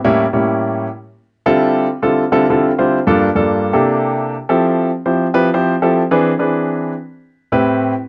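A polished, up-front grand piano carries this short fiery jazz fragment alone from 0.0 to 7.9 seconds, driving along at 158 BPM in straight 4/4 in A minor. Its present, warm tone moves through rich harmony, from A7b9 and Dm11 through Gm9, C13 and Fmaj9 to E7b13 before settling on Am9. Light reverb and a dark production frame the piano.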